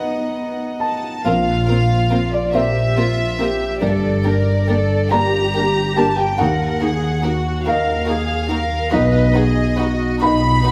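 This cinematic, emotional film-score excerpt opens with a felt-muted upright piano, its thick felt giving a soft, mellow, vintage tone, alongside a dark viola section, a warm cello section and a warm violin line, all bowed sul tasto for an intimate, close feel. At 0.8 seconds a second violin section takes the melody high in its range, its soft attack and pure, floating sound drifting softly in the background. A dark double bass section enters at 1.3 seconds, sitting up front and anchoring the low end beneath the cellos. The tempo is a slow, rubato 47 beats per minute in a lilting 6/8, and the harmony moves from B through Bbsus2, Gmadd9 and Ebm before returning to B. Light vibrato colours most of the strings, and a moderate scoring-stage reverb surrounds the whole, creating a tender, uplifting mood.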